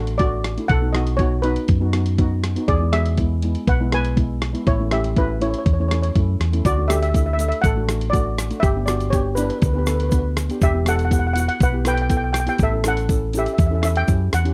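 A dry, close 1970s-style studio sound frames this carefree, sunny calypso excerpt at 121 BPM in D major, where a shimmering lead steel pan played with medium rubber sticks sits up front over a mellow, boxy second pan on soft rubber sticks, a dark, round, punchy hollow-body electric bass, and a gritty, compressed sampler-style drum kit with a thumpy kick, hi-hat and rim click, while a grainy egg shaker joins in the background at 6.7 seconds.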